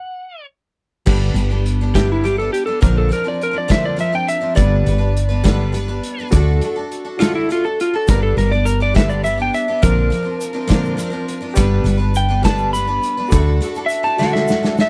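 A dry, close-sounding excerpt of hopeful, open-road folk rock and heartland rock in 6/8 opens with a brief stop before the band enters at 1.1 seconds. A compressed, slightly broken-up electric slide guitar played with fingerpicks carries the melody up front as a solo, over a shimmering, octave-doubled twelve-string acoustic guitar with finger squeak, a barky, lightly overdriven electric piano with fast tremolo in the background, and a growly, round fretless bass. A loose indie drum kit with a pumping small-room sound and tight kick runs under the changes among G, Bbadd9 and D, a grainy tube shaker joins at 8.1 seconds, and a drum fill closes the passage.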